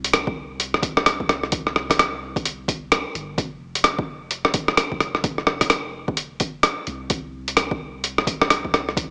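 Ghostly and rainy, this future garage excerpt moves at 129 BPM in 4/4 with a 61% swing on the 16ths. A muffled, pitched-down sampler-style kit sits up front with hi-hat and rim click in a small room, joined at 0.3 seconds by a punchy, layered electronic kick, while a deep, round 808-style bass pumps from the background under sidechain. The whole fragment carries a gritty cassette-tape, small-speaker character inside a moderate hall reverb.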